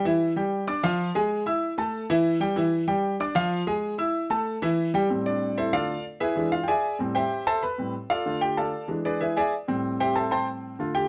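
A straight 4/4 pulse at 190 BPM drives this fiery latin excerpt in A minor, tuned to A4 = 444 Hz, where a lone concert grand piano, clear and up front with deep bass, short sustain and a natural tone, ranges from A2 to E6 under light reverb and close, detailed miking, first circling Dm, E and A5 before moving at 5.1 seconds into a solo passage over Am7, Dm and E7 that runs to the 11.1-second cut.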